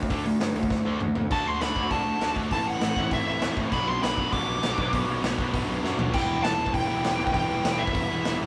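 A raw, angry punk rock fragment bursts in at once with two picked guitar riffs, a distorted one and a darker, sludgy overdriven one, set back in the mix over a growly fuzz bass and a gritty, saturated garage drum kit that sits up front. The kit has a punchy kick, a medium-tuned snare and a rolled-off top, with crash, hi-hat and toms pumping in a bright stone room. A drum fill leads into the entry of a smooth overdriven lead guitar at 1.3 seconds, which carries the high melody over the straight rhythm section. The chords move from a D power chord through D, Am and Bm, with another fill before the music settles on Em at 6.1 seconds. The rough rehearsal-room sound and moderate small-room reverb keep it raw and unpolished until the cut at 8.5 seconds.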